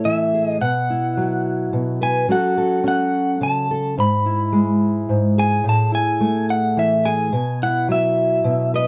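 In a lilting, straight three-beat metre, this short cut from a longer acoustic folk piece feels pastoral and nostalgic, like a small band or duo playing on a quiet porch. A fingerpicked steel-string acoustic guitar carries the accompaniment across the full 8.9 seconds, its dark, concert-quality tone up front in the mix, with finger squeaks adding an intimate, handmade touch. Over it, an electric guitar through a small old amp plays the melody high in its range. That amp gives it a slightly broken-up, compressed, lo-fi character, fingered rather than picked, with a harmonic tremolo shimmering through every note. The harmony drifts through open, suspended colours such as Bsus4, F#m and E/G#, leaving the mood hanging between wistful and calm. Light reverb and a warm, dusky production wrap the two guitars together in a soft, close-up sound.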